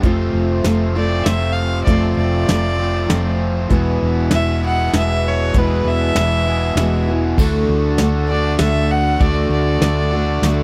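A straight 3/4 pulse at 98 BPM drives this warm, jangly folk rock and heartland rock excerpt, anchored by a soft brush drum kit with a punchy kick up front and a dark, round hollow-body electric bass. A picked steel-string acoustic guitar supplies the accompaniment while a bright, double-tracked overdriven electric guitar plays a riff, and from 1.0 s a rich, nasal fiddle with an earthy, airy bow carries the melody over chords moving from F to Eadd9. At 7.4 s, as the harmony settles on D, a very quiet, reedy pedal harmonium adds sustained chords, all captured in a dry, close 1970s-style studio sound with light reverb.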